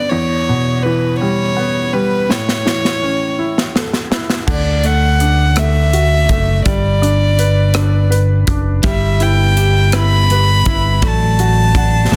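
A swaying 6/8 lilt at 55 BPM carries this romantic pop ballad in D major, opening on a clear baby grand piano and an intimate, airy violin melody with light vibrato and a touch of digital delay. A modern studio drum kit enters at 2.3 seconds with a fill, bringing a punchy kick and bright cymbals, and a dark, round fingered electric bass sits up front from 4.5 seconds. At 8.8 seconds a bright, twangy twelve-string electric guitar adds picked arpeggios in the background, all within a small, lightly reverberant room and a dense, heavily limited modern master in this short cut from a longer piece.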